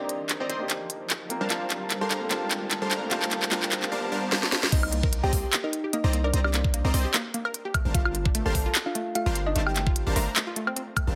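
Future bass in C dorian at 149 BPM with a half-time, lightly swung feel, this bittersweet, dreamy excerpt cut from a longer piece moves from a build-up into a drop at 4.7 seconds over alternating Cm7 and Gm11 chords. A round, tine-like thumb-piano-style synth pluck carries the melody through chorus and dub echo, while a warm baby grand piano sits in the background as accompaniment until the drop, and a background riser runs through the build-up. A punchy, airy supersaw stab plays a detuned riff through a low-pass filter, and a deep, boomy 808-style bass with a fast attack anchors the low end up front. The trap kit brings a sharp snare, crisp hats, handclaps, woodblock and crash, with drum fills leading into the drop, where a knocking electronic kick and a lush, wave-folded unison pluck playing arpeggios join in. Sidechain pumping runs through the melodic and bass parts, and the whole track sits in a moderate digital room reverb with a heavily compressed, radio-like finish.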